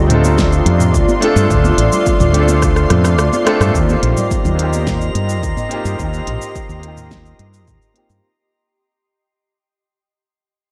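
A dark, round fretless electric bass with tube saturation sits up front in this wistful, relaxed sunset chillout excerpt at 107 BPM, joined by a clear concert grand piano roughened by 12-bit sampler grit, a low-pass filter and digital delay, a shimmering, detuned ambient pad, a smooth R&B kit with fat snare, cabasa and rim click, a punchy layered electronic kick, very quiet ringing congas and, from 4.1 s, a faint glassy harmonics texture, as the harmony moves from Dm7 to Eb6 and a drum fill leads into a fade-out from 3.7 s, where filter sweeps run across the bass and piano inside a blown-out, overdriven mix.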